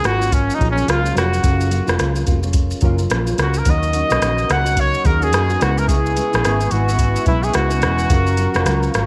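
A soft vintage rhythm box sets a 4/4 pulse at 108 BPM, its sixteenths swung at 60%, with a deep kick, metallic hi-hats, rim clicks and shaker sounding tape-warm and up front, as if re-recorded in a large room. This hazy, nostalgic slice of indie and bedroom pop in F# major is cut from a longer piece. A clear, punchy trumpet carries the solo melody from the start until 8.9 seconds, riding up front with analog chorus and slapback echo. Beneath it a dark, round, foam-muted electric bass sits close, while a fingerpicked nylon-string guitar with chorus and a warbly pitch drift and mellow, detuned analog keys with filter sweeps and decaying notes stay in the background. At 3.6 seconds a hollow, flute-like pad with chorus drifts in with soft, sustained chords, as the harmony moves from F#maj7 through D#m7 and C#m7 before settling back on F#maj7 under light reverb.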